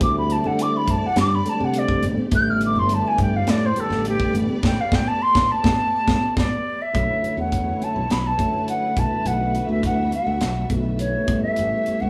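A pure, straight-toned concert flute opens this slick, bright electric jazz fusion excerpt at 104 BPM in 4/4, soloing over a tonewheel organ with a slow rotary speaker, light overdrive and audible key click. Beneath them a modern fingered electric bass sounds direct, and a crisp fusion drum kit sits up front with a high-tuned snare, tight kick and hi-hat, while close, dry congas join very quietly at 0.4 seconds. A lush symphonic string section holds sustained chords in the background, bowed with vibrato and portamento. The harmony moves through suspended ninth chords, a band accent begins at 4.6 seconds, and an organ fill and a drum fill lead into a new section at 6.9 seconds, where the chords shift to Bm11 before arriving on A7. The band plays live together in one small room with moderate ambience, and the drums carry an airy, polished studio sheen.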